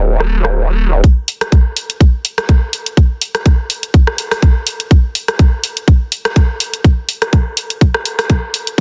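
Bass house at 124 BPM in 4/4, with a 16th-note swing that gives this short excerpt a bouncy, gritty feel. It opens on a nasal, resonant vowel-sweep wobble bass down at D1, saturated and up front, with chorus, overdrive and sidechain pumping shaping its sustained tone, and it plays only until 1.0 seconds. A garage drum kit slips in at 0.2 seconds with hi-hat and rim click, its snare given soft clipping and filtering and its hats filtered as well. From 1.0 seconds a tight, tape-toned electronic kick takes the front of the mix, and the track moves into a build-up that runs to the end at 8.8 seconds. Light reverb surrounds the parts, and the master is dense and heavily limited in a modern style.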